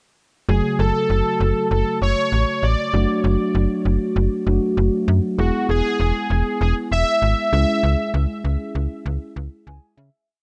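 Synth-pop in F# minor at 98 BPM, this short, complete piece feels melancholic yet driving, moving through a single verse over F#m, D/F#, E and C#m. A slap-like FM bass sits up front with a snappy, metallic attack and a sequenced, decaying digital tone, carrying the low end from E1 to C#3. Above it, a mellow tine electric piano holds clean triad chords with a lush chorus, while an analog synth brass sings a motif-based melody between F#4 and E5, its detuned sawtooth sound bold and fat, with vibrato, a filter sweep, chorus and tape echo. The brass drops out at 8.1 seconds as the track fades from 7.8 seconds, and the electric piano plays a closing fill over the bass, ending at 10.3 seconds. Light reverb and a dark, warm production give the whole piece a melancholic glow.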